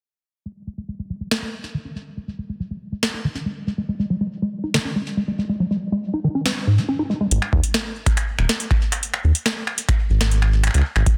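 A rubbery, resonant square-wave acid bass opens this glitchy, cerebral IDM excerpt at 0.5 s, playing dark arpeggios at 140 BPM through a filter sweep with a cassette-tape grain and digital delay, before a booming analog drum machine arrives at 1.3 s with finger snaps, a crisp snare and metallic hi-hats, overdriven, delayed and placed up front; at 7.3 s a round, detuned bass blending sawtooth, sine and triangle tones takes over the low end, soon joined by a deep, overdriven electronic kick, all within light reverb and a dense, heavily limited modern master.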